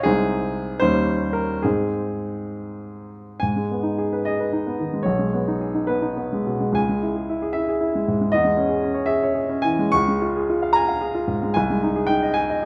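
A baby grand piano carries this passionate, romantic character piece alone, its tone warm, natural and up front throughout the 12.7-second passage cut from a longer work. The music moves in 6/8 with free rubato, the dotted-quarter pulse drifting between 65 and 81 BPM. It opens in Ab major, settling from an Eb7 onto the home chord, before turning toward G# minor at 3.4 s. The harmony then moves through C# minor before reaching Db and returning to Ab over C near the end. The writing spans the keyboard from a deep B1 up to a bright Db6. Close, detailed microphones capture the instrument within a moderate recital hall reverb, and the tuning sits slightly below standard pitch.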